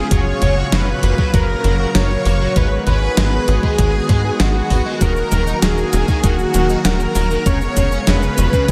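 Soaked in a huge ambient reverb, this dreamy, cinematic synthwave excerpt drives along at 98 BPM in a straight 4/4, set in Eb minor. An airy, detuned supersaw carries the melody with a soft attack and a trail of delay. A shimmering, vintage string machine of violins plays a second line in the background, with ensemble chorus and delay of its own. A second, smoother supersaw holds sustained chords from low Bb2 up to F5, pumping against the sidechain, while a biting overdriven guitar picks out a riff behind it through analog chorus and delay. Up front, a tight, punchy, wave-folded sequencer bass plucks out the low end, joined from 0.1 seconds by a thumpy, overdriven electronic kick and a gated 80s drum machine playing cabasa, hi-hat and a gated-reverb snare. The harmony moves from Gbmaj7 through Abm7 and Ebm to Db7/F before the excerpt is cut off at 8.7 seconds.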